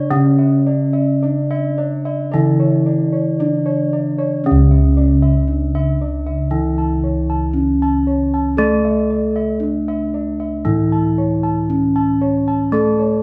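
This stately, shimmering gamelan piece at a slow 58 BPM opens with ringing bronze metallophones carrying the melody and a lower accompaniment, while round, beating bossed gongs sound both high arpeggios and the bass, and a faint higher metallophone arpeggio line drops away at 4.4 seconds as the second section begins, returning briefly at 12.7 seconds, the ensemble playing live together in one room, bathed in a wet large studio reverb.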